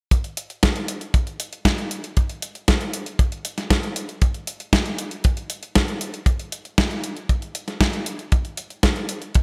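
Italo disco at 117 BPM in a straight 4/4, this short excerpt from a longer piece carries a danceable, romantic mood. The groove rests entirely on drums, running from 0.1 to 9.4 seconds. An acoustic kick drum sits up front, tight and natural, with the feel of a small room. Alongside it, a clean 12-bit digital drum machine supplies hi-hat and a medium-tuned snare with a sampler-style, electronic character, pushed up front and given overdrive and gated reverb as though re-recorded in a large room. The overall production is bright and 1980s-styled, with a light reverb.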